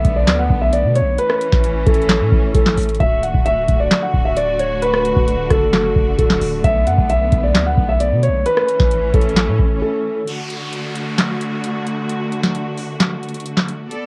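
Dry and close, with the character of a home cassette recording, this wistful, dreamy trap cut moves at 132 BPM in a half-time feel in D major, built on a Bm7, A and D progression. A dark, intimate grand piano with audible action noise carries the melody up front through a tape haze, over a rich, biting symphonic string section holding bowed chords with light vibrato, a deep sine-toned 808-style bass with long decaying notes, and a booming analog drum machine whose deep kick and rim clicks join a tonal snare, handclaps and metallic hats that sit in a short room. The piano stops at 10.2 seconds and the bass at 9.8 seconds, opening a break where an electronic downlifter enters at 10.3 seconds beneath the strings and drums until this fragment of a longer piece cuts off.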